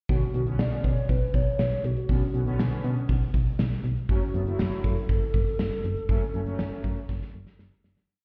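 Synth-pop in B minor at 120 BPM with a straight 4/4 drum-machine beat and a melancholic, cool mood, moving from Bmadd9 to F#m across a single verse that fades out from 6.1 seconds. A hollow, woody clarinet-like synth lead with chorus, tremolo, vibrato and digital delay carries a motif-based melody of call phrases over fat, detuned analog synth brass pushing close-voiced chords with a filter sweep, while a punchy, round FM bass and a gated 80s kit with a tight kick and airy stone-room character sit up front. The whole piece sounds muffled, as if heard through a wall, set in light stone-room reverb, and a drum fill closes it from 7.1 seconds.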